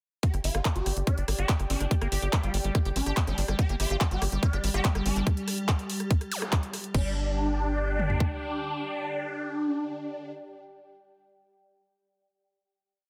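A swarming, aggressive rave lead with detuned unison and a pitch-rise attack drives this intense, psychedelic trance piece at 143 BPM, repeating its riff over overdriven electronic drums with a tight four-on-the-floor kick, bright hats, claps and a rolling sixteenth-note sequencer bass that sits up front. A squelchy, resonant acid line with accents and slides enters at 1.9 s, a soft, breathy pad shifts chords in the background, and a tense granular drone adds a held high note before a zap effect at 6.3 s. The groove gives way to a final chord at 6.9 s, all within light digital ambience and a dense, heavily limited modern master.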